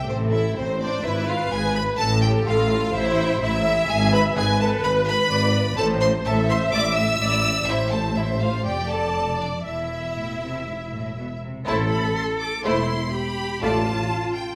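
A quick 4/4 pulse at 125 BPM moves with an elastic, rubato feel in this dramatic, stormy excerpt from a classical-period movement for string orchestra, settling into A minor from 3.9 s. A violin section carries the melody high above the ensemble, its tone smooth and even yet somewhat distant, while a second, lush violin section plays a focused second line beneath it. Violas supply warm, vibrato-laden accompaniment, and the cellos join the double basses on the bass line with close, expressive bowing and portamento slides. The basses sit up front with a dark, soft-edged attack that grounds the harmony as it moves through Am, Abm6 and E7/G#, then Dm/F and Am/E, before a brief chordless moment. A new passage begins at 11.7 s, and the second violins and violas drop out at 13.8 s; the basses follow at 14.0 s, and the melody and cellos ring on through a wet recital-hall reverb.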